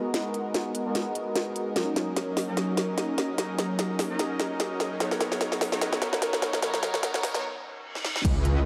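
A dark, lush hall-reverb sheen frames this short, emotional and bittersweet future bass build-up at 148 BPM, with a swung, half-time feel moving through G#m9, D#m7 and Bmaj9. A smooth, up-front supersaw riff runs under a filter sweep, with phaser and digital delay. A breathy pad sustains chords in the background, and a trap kit's sharp snare, crisp hats and crash cymbal drive a drum fill. A riser enters at 5.6 s, a reverse cymbal swells into a break from 7.4 s, and at 8.2 s an impact lands with an overdriven, punchy kick and a thick, detuned saw bass.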